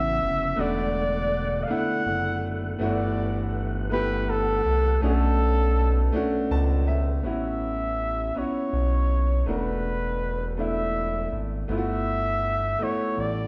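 Warm and sensual, this slow six-eight R&B fragment at 54 BPM in A mixolydian sets a mellow, close-miked flugelhorn singing a jazz-style solo line with vibrato over a clear, boxy baby grand piano and a smooth, detuned, saturated synth bass up front. A lightly overdriven tonewheel organ with key click, chorus vibrato and slow rotary speaker holds sustained chords in the background until 7.2 s, where it stops together with a piano fill that began at 6.1 s. All of it sits in the moderate reverb of a large studio where the band plays live together.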